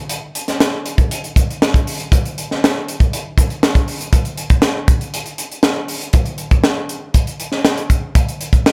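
A crisp fusion drum kit carries this short rock cut at 119 BPM in a straight 4/4, its high-tuned snare, punchy kick and hi-hat sitting up front in a small, pumping room. The mood is intricate and wistful, with the playing shifting into a new section at 4.1 seconds. The sound is close and dry, with little reverb.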